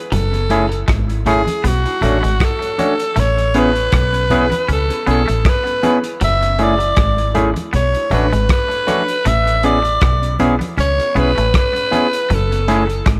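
A barky, bright tine electric piano opens this tender, sweet lovers rock reggae excerpt in A major, joined almost at once by the full band at a relaxed 79 BPM in 4/4 with a gentle swing on the sixteenths. Up front, a raspy alto saxophone carries the solo melody in a pop style, its edgy, gritty tone shaded with vibrato and trailed by tape echo. A deep dub fingered electric bass sits just as forward, round and punchy with a foam-muted attack, while a crunchy breakbeat kit of hi-hat, tight kick and rim click sounds saturated and dark with a rolled-off top. In the background, a twangy, compressed electric guitar picks a riff and a mellow, clean electric guitar adds fingered stabs from 0.5 seconds, both carrying tape echo, as very quiet congas with soft hands ring close and dry. The harmony cycles through lush F#m9, Bm9 and Amaj9 chords under a light studio reverb, and the recording is cut from a longer piece, ending at 13.2 seconds.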